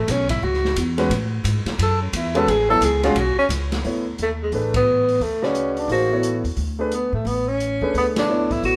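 Hypnotic and searching, this short modal jazz excerpt swings in 4/4 with a band playing live together in one large studio room, its moderate reverb lending a sense of space. A breathy tenor saxophone carries the melody up front with subtone, vibrato, soft attacks and scooped notes, taking a solo from the start to 3.8 seconds, over a growly, woody pizzicato upright bass and a dark, smooth drum kit with dark cymbals and a boomy kick. The grand piano enters at 1.0 second with an intimate, natural tone, long sustain and audible action noise, and the band lands accents at 4.7 and 8.1 seconds as the harmony moves from A to Dsus2.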